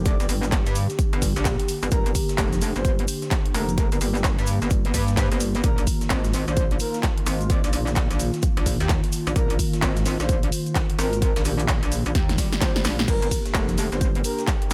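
A metallic, saturated wobble bass sits up front in this bouncy, gritty bass house excerpt, pumping against a punchy layered kick while a big-room dance kit adds snare, handclaps, hi-hat and crash, and a very quiet sampler-style breakbeat kit with a high-tuned snare and tambourine rides underneath alongside a grainy cabasa in the background. A breathy, flute-like synth lead with vibrato carries the melody through lush chorus, cassette tape colour and delay, floating over a detuned, resonant sawtooth pad that holds sustained chords moving from Gm to Bbsus4 and back. A drum fill arrives at 12.2 seconds with a faint electronic swell, all set in light reverb.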